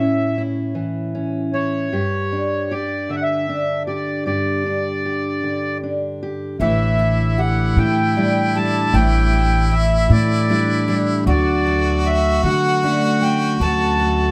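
Acoustic folk in a slow, pastoral 6/8 at 51 BPM, with a reedy, vintage-toned accordion carrying the melody up front over a dark, full-bodied fingerpicked steel-string guitar, until at 6.6 seconds a soft-edged harmonica adds a gentle second line with light vibrato, a bright, shimmering picked twelve-string guitar spins arpeggios, and a woody pizzicato upright bass settles underneath, all wrapped in light reverb and changing from A to G5, then A7sus4 and then Dmaj7 at 11.3 seconds in this warm fragment of a longer piece.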